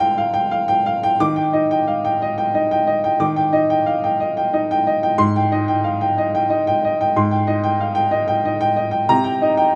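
An intimate, peaceful fragment of neoclassical minimalist piano in a rubato 6/8, cut from a longer piece, in which a clear, woody upright piano with a boxy, short-sustained tone sits up front in light reverb, drifting from Gm7/D to Ebmaj7 at 1.2 seconds and on through Abmaj7 to Cm7 across a range from Ab2 to Bb6.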